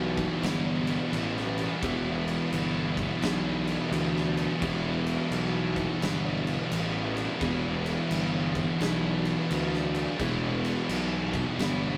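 A swung 4/4 groove drives this ominous, hypnotic slice of stoner and doom metal, set by an oversized low-tuned acoustic drum kit whose punchy kick, medium-tuned snare and dark crash cymbals come in at 0.2 s with a pumping, saturated big-room sound. Up front, a growly, overdriven fuzz bass played with the fingers anchors the riff, while a bright, double-tracked high-gain guitar plays it an octave above two thick fuzz guitars that sit very quiet in the background. The whole take has a rough rehearsal-room character, washed in a moderate stone-room reverb.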